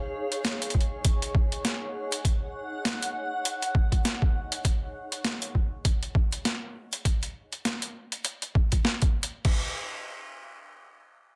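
A swung 16th-note groove at 100 BPM in 4/4 drives this playful, swaggering glitch hop fragment in Eb minor pentatonic, cut from a longer piece. Two gritty, pitched-down, sampler-style boom bap drum parts sit up front: a high-tuned snare with hi-hat enters at 0.3 seconds, and a thumpy kick with crash cymbal follows at 0.7 seconds. Both are compressed, overdriven and re-recorded in a large room. A bright, blurred granular cloud pad with sidechain pumping and its own reverb opens the track, holding an Ebm7 chord until 4.6 seconds, after which the drums carry on alone under light reverb and a dense, heavily limited master.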